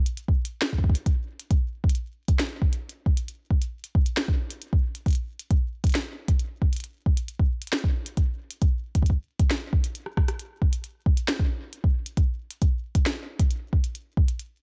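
A dry recording with little reverb, this excerpt of melancholic, eerie IDM moves in a straight 4/4 and is built entirely from up-front electronic percussion. A glitchy drum kit of clicky hi-hats, rim clicks and a tiny snare, treated with tape echo, runs from 0.1 to 14.5 seconds beside a soft, tape-warm electronic kick drum. A short drum fill at 10.1 seconds briefly breaks the pattern.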